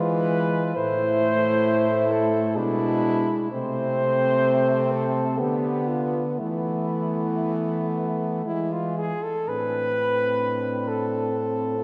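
A slow, rubato 3/4 passage for four French horns in A minor opens at 0.0 s and sounds elegiac and solemn, with a warm, distant-sounding horn carrying the melody over a clear second line, a mellow inner accompaniment and a close-miked bass horn. The upper three horns play with soft attacks, and the melody, accompaniment and bass carry touches of vibrato. All are bathed in a long church reverb as the harmony moves through a diminished chord and a suspended dominant before settling onto A minor at 9.5 s in this fragment cut from a longer piece.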